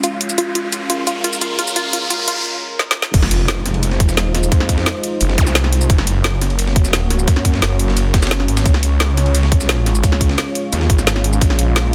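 Driving straight 4/4 drum and bass propels this dark, technical cut from a longer piece, its mood futuristic and mechanical. It opens on a build-up where an overdriven kit with a woody snare, bright hats, shaker and crash sits up front under a filter-swept analog pad of deep, moody, detuned sawtooth chords with chorus and sidechain pumping. A lush, punchy unison pluck plays arpeggios with dub echo until 2.4 s, while a riser leads into a short break and a drum fill. The drop lands at 3.1 s with an impact and zaps, a tight, layered electronic kick, and a snarling, growling distorted saw bass with a resonant moving notch. Far beneath, a gritty, tape-warm breakbeat sampler kit adds ride and snare, and the dense, heavily limited master wraps everything in light digital ambience as the chords move from Fm7 through Gb and Db back to Bbm7.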